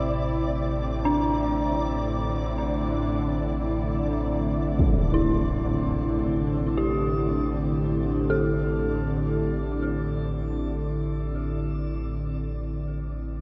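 Desolate and dark, this dark ambient drone drifts in free time through a vast, echoing space soaked in cathedral-like reverb, and it is cut from a longer piece. A deep rumbling drone sits up front from the start, ominous and warbling with a vintage, detuned character, while a sweeping resonant pad holds sustained chords above it, its airy, evolving sawtooth tone brightened by chorus and shimmer reverb. High above, a flickering grainy texture hovers on a single granular note and fades out across the full 13.4 seconds. At 1.1 seconds an eerie, detuned synth bell enters with mellow, inharmonic arpeggios, its decaying tones colored by chorus, phaser, tape echo and shimmer. At 4.8 seconds a huge impact strikes briefly in the background, darkened by a low-pass filter, before the sustained layers carry on over a D5/A chord.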